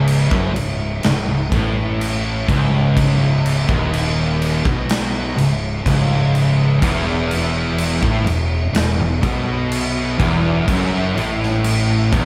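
Recorded live by a band in one large studio with moderate reverb, this sludgy, hypnotic stoner and doom metal excerpt crawls at 62 BPM in 4/4 over a B9/C# chord that shifts to E5 at 6.8 s, with a bright, compressed, double-tracked fuzz guitar and a dark, thick fuzz guitar playing low riffs in the background, a growly overdriven fingered bass underneath, and an up-front acoustic drum kit with a punchy kick, medium-tuned snare and bright crash cymbal, joined at 6.8 s by a second thick, warm fuzz guitar riff.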